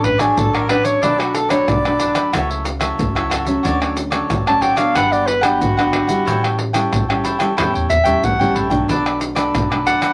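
A breathy, up-front soprano saxophone solos in jazz style over this sunny, joyful samba-and-choro excerpt at 92 BPM in D major, backed by crisp picked cavaquinho, fingerpicked classical nylon-string guitar, growly woody pizzicato upright bass and a compressed, saturated percussion section of deep surdo, pandeiro, egg shaker and tamborim that adds a drum fill at 7.6 seconds, all in moderate studio reverb as the chords move from Dmaj7/A through Gmaj7 and A7 to Bm7.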